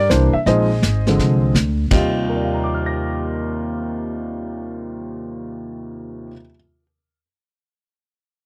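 A warm, up-front baby grand piano carries the melody across a broad range in this sophisticated, relaxed jazz piano trio excerpt, swinging at 166 BPM in Eb major, with a woody, growly pizzicato upright bass underneath until 6.3 seconds and a punchy, rolled-off vintage brush kit that drops out at 2.2 seconds, all captured in a dry, close 1970s-style studio sound as the harmony moves from Bb9sus4 to Eb69.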